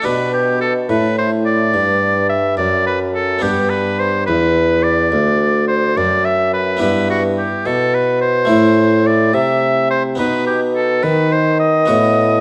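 Set in a wet recital-hall reverb, this serene, flowing baroque-style sonata movement in a straight 12/8 at 71 BPM pairs a clear, up-front oboe melody with light vibrato, a round, close-miked French-style harpsichord accompaniment and a mellow bassoon bass line, moving from G major into E minor at 6.8 s before the cut-off at 12.4 s.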